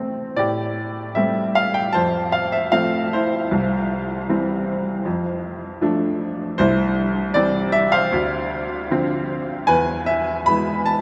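A bright baby grand piano carries this lyrical classical solo, its tone brilliant yet slightly worn, with a natural, up-front presence and a short sustain. The mood is wistful and reflective, moving at about 77 BPM in 4/4 with a rubato feel in A minor, and the playing spans from C2 to B5. The harmony drifts from Am7 through F, C, F6 and C again before settling on Dm7 and arriving on E at 9.7 seconds, leaving the phrase suspended. A huge, wet reverb with an 8.2-second decay places the instrument in a vast, echoing space. This 11-second passage is cut from a longer piece, beginning at 0.0 seconds and breaking off mid-thought.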